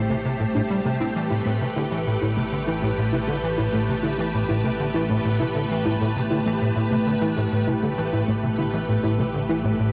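A straight 4/4 pulse at 99 BPM is driven by a tight, punchy sawtooth sequencer bass riff with tape echo, beneath a warbling, lo-fi pluck playing detuned arpeggios in the background, in this cosmic, expansive piece of ambient space music in A minor, held on a single Am7 chord. Up front, a bright, lush string machine ensemble sustains slow-attack chords with ensemble chorus, while an evolving pulse-width analog drone on A1 fades in gradually across the full 9.9 seconds. A long hall reverb and the pitch drift of worn cassette tape wrap this fragment of a longer piece in a dusty, vintage haze.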